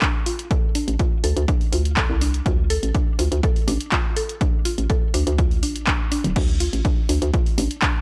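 A woody, round synth pluck plays a quirky minimal techno riff in straight 4/4 from the start, its chorus, analog delay and sidechain pumping set over an up-front electronic kick and an analog drum machine's crash cymbal, handclaps and hi-hat, both drum parts re-recorded in a large room. At 0.9 s a hollow, bouncy FM bass enters up front with a knocking, fast-attack tone that also pumps to the sidechain. The sparse mix has a dry, gritty hardware sound with transformer saturation and little reverb, heard as a short cut from a longer piece.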